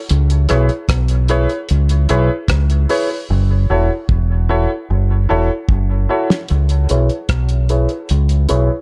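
A deep, fingered electric bass and a cloth-damped drum kit open this meditative dub reggae excerpt at 0.1 s, set at 75 BPM in a straight 4/4 feel in C# minor, tuned to A4 = 445 Hz. The bass sits up front, dark and round, while the kit offers a thuddy, fat snare, a tight kick, hi-hat and rim clicks with a rolled-off top end. A clear concert grand piano enters at 0.5 s with stabs, its worn tone carrying long sustain through a low-pass filter and dub echo. The harmony moves from C#m7 to F#m7, where a drum fill runs from 3.3 s, then returns to C#m7 as a filter sweep on the piano marks the final section. A small room ambience wraps the deep, unhurried groove.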